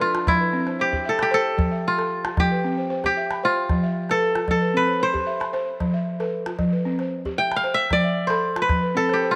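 Light reverb and studio ambience frame this joyful, hypnotic West African string and xylophone music at 114 BPM in F lydian, tuned to A4 = 443 Hz, where a bright, ringing, fingerpicked kora carries the solo melody up front through the full 9.4 seconds, a woody, buzzing balafon struck with soft rubber mallets spins arpeggios alongside it, and a small calabash adds percussion, over harmony that alternates between F and C in this short cut from a longer piece.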